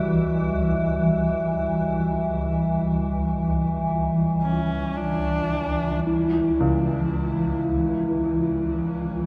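Desolate and dark, this free-time dark ambient drone excerpt opens with a swarming, detuned drone up front and a deep, moody analog pad with chorus, joined by the meditative ringing of a metallic bronze singing bowl. A husky, expressive horsehead fiddle with tape echo enters at 4.4 seconds, and a boxy baby grand piano adds dark, intimate arpeggios from 6.6 seconds, all set in a cavernous cathedral reverb.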